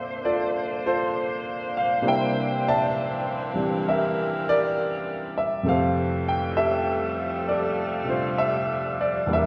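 A natural, up-front grand piano and a clear, vintage saxophone section begin together, the piano accompanying while the horns hold sustained chords with vibrato over a slow 66 BPM swing in 4/4. The harmony moves from Bbmaj9 to C13 at 2.0 seconds and settles on Fmaj9 at 5.6 seconds, giving this brief fragment of a longer ballad a romantic, late-night mood. A wet recital-hall reverb with a 1.3-second decay surrounds the ensemble, tuned slightly high to A4 = 441 Hz.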